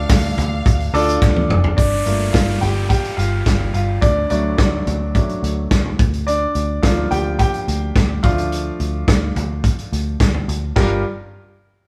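A bright concert grand piano leads this earnest, driving piece of piano-led pop in G minor at 107 BPM, taking a solo from 1.8 to 10.8 seconds over chords moving from Gm7 through D and Bb/D to Dm. Its brilliant, polished tone has deep bass and short sustain, and it sits up front beside a loose indie drum kit. The kit has a punchy kick, a medium-tuned snare and a gritty, saturated sound across crash, hi-hat and toms, and it plays a fill just before the solo begins. A dark, round, foam-muted electric bass holds the low end throughout. In the opening moments a lush bowed violin section holds an F5 with expressive vibrato, joined by a very quiet, crisp group handclap, and an electronic downlifter appears beneath the first half of the solo. The band plays live together in a moderate stone room with a 1.1-second reverb, and the passage is cut from a longer piece.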